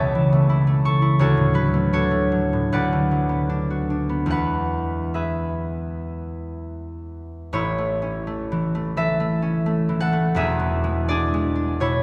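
Graceful and dreamy, this short classical excerpt features a solo concert harp played with a free, rubato feel in 4/4. The fingerpicked harp sounds acoustic and ringing, sitting up front in the mix while its notes span from a deep E1 up to a bright C#6. A long cathedral reverb surrounds the instrument, lending the church or concert hall setting a spacious, glowing tail. The harmony moves from A/C# through Dmaj7 and Bm/D to E before the second section, beginning at 7.5 seconds, returns to A and closes on E7. Cut from a longer piece, the passage captures a dreamy, suspended moment of harp writing.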